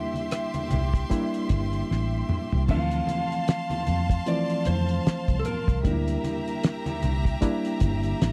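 A swung sixteenth-note feel in 4/4 drives this bittersweet, smooth stretch of 1970s-style soul, where a slightly broken-up, lo-fi electric guitar carries the melody until 7.0 s over a lush bowed violin section, a barky reed electric piano with fast tremolo, soft-handed low-tuned congas set back in a large room, a thuddy cloth-damped drum kit that plays a fill from 1.9 to 2.7 s, and a round, foam-muted fingered bass entering at 0.7 s, all in a dry, close studio sound.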